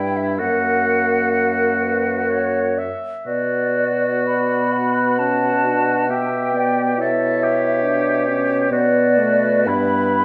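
Solemn and melancholic, this slow romantic movement for wind quintet moves in an unhurried 3/4 at 58-71 BPM, its rubato phrasing giving the B minor music a breathing, elastic pulse. The concert flute carries the melody in a high register with a pure, hollow tone, close-miked and shaded by vibrato and tongued articulation. Beneath it, the oboe adds a second line with a warm, vibrato-laden voice that sounds distant and roomy, while the clear clarinet and the warm French horn fill out the accompaniment. The bassoon anchors the bass with a dark, soft-attacked sound and light vibrato, placed up front in the blend. All five instruments play together throughout this excerpt, which is cut from a longer piece and ends at 10.2 seconds, with harmonies shifting from F# through Bm and Em/B, back to Bm, before settling on Em/G, all framed by a moderate recital hall reverb.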